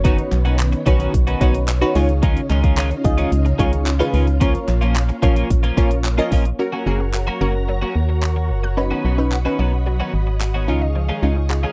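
Upbeat and summery, this dance-pop piece at 110 BPM in F# major rides a punchy, layered electronic drum kit of kick, hi-hat and handclaps, alongside a hollow, dark FM bass, detuned digital wavetable chord stabs and a warbling vintage organ-string pad that all pump with sidechain, while a twangy, clean twelve-string electric guitar riff carries subtle chorus, a very quiet human group handclap sits in until 6.2 s, and from 6.6 s a bright, wave-folded unison pluck arpeggio drifts in the background through flanger and tape echo, captured in a dry, close 1970s-style studio sound.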